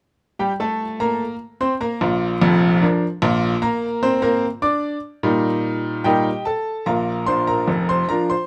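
The recording sounds close and intimate, with a bright upright piano placed up front in a light reverb, and the mechanical noise of its action is clearly audible beneath the notes. This short fragment of ragtime, in a duple metre with a straight feel, has a playful, cheerful mood. The solo piano enters at 0.4 seconds and covers a broad span, from deep bass notes to sparkling high treble, with a woody character. The opening passage runs until 6.9 seconds, when a new section begins and carries on until the piano stops at 8.5 seconds, as if cut from a longer piece.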